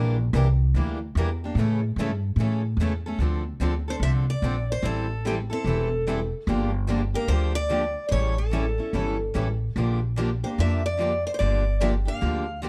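Set in a dark production with light reverb, this bittersweet, fiery excerpt of acoustic string swing pairs a woody, thumpy pizzicato upright bass on gut strings with two picked steel-string guitars, one a boxy parlour and the other a full-bodied jumbo with audible finger squeak, before a bright, picked parlour-guitar melody enters at 3.9 seconds over the swinging minor-key changes.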